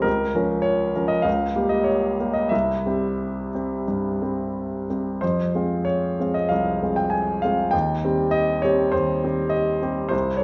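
A concert grand sits up front and intimate in a wet recital hall, its tone polished with deep bass and audible action noise. This romantic character piece for solo piano, a 10.4-second fragment of a longer work, moves in a bittersweet, stormy 4/4 with flexible rubato. The harmony passes from Bbm/Db and Gdim/Db to C, then settles through Fm onto Cm/Eb.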